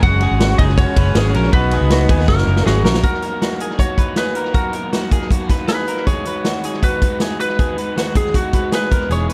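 Nostalgic and breezy, this jangly indie pop excerpt sets a dark, slightly broken-up lead guitar melody with tape echo over crunchy overdriven rhythm guitar, a twangy, direct-recorded clean guitar playing lightly chorused arpeggios, and up-front vintage drums with a punchy kick and a fill that closes the opening section. A very quiet, bright trumpet line ends at 2.8 seconds, and a reedy, heavy-vibrato combo organ and a round, foam-muted bass drop out at 3.0 seconds before returning at 9.1 seconds, all set in a dry, echo-heavy mix.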